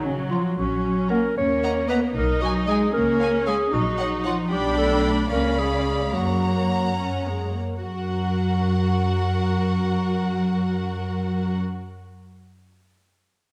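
A moderate scoring-stage reverb gives this cinematic passage, cut from a longer piece, a sense of space around its bowed, vibrato-laden string sections. In F# major at 76 BPM in 6/8, it feels playful and quirky: one violin section carries a focused melody up high while a second violin section and a warm solo clarinet trace second lines, over a lush viola accompaniment and smooth, even cello and double bass sections, with the double bass sitting up front. The violins come in at 0.3 s, and the harmony takes a surprising turn through G/B and C#7b9 before settling on F#.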